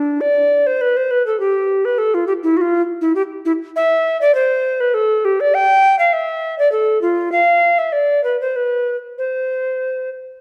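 In a flowing, rubato triple metre, this excerpt from a baroque-style classical fantasia moves with a dance-like lilt, played by a solo tenor recorder from 0.0 to 10.1 seconds, tuned to A4 = 435 Hz. The recorder sits close and up front with an airy, woody straight tone, its tongued notes carrying a distinct chiff as the line ranges from D4 to G5. A wet recital-hall reverb surrounds the instrument.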